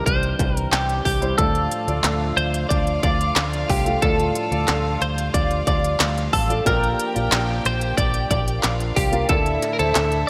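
A clean, compressed twelve-string electric guitar carries the melody up front in this bittersweet, earnest piano-driven pop excerpt in D minor at 91 BPM, over a polished grand piano with analog chorus, a distorted industrial drum kit with clanging snare, crisp hats and handclaps, a round, foam-muted fingered bass, a percussive tonewheel organ with key click and slow rotary speaker in the background, and a smooth studio violin section playing with vibrato and entering at 1.4 s, within a lush hall reverb and bright 1980s-style digital production.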